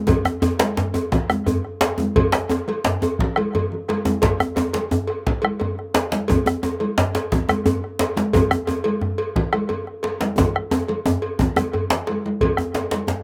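Earthy and festive, this excerpt of a West African traditional drum ensemble in 12/8 at 117 BPM gradually speeds up, with a deep, dark bombo sitting close and dry up front beside two djembes, one warm and the other up front with metal rattles, while ringing, hard-handed congas with a vintage, band-limited tone and a metallic cowbell complete the outdoor recording under light reverb, and drum fills break in at 3.5 s and again at 10.4 s.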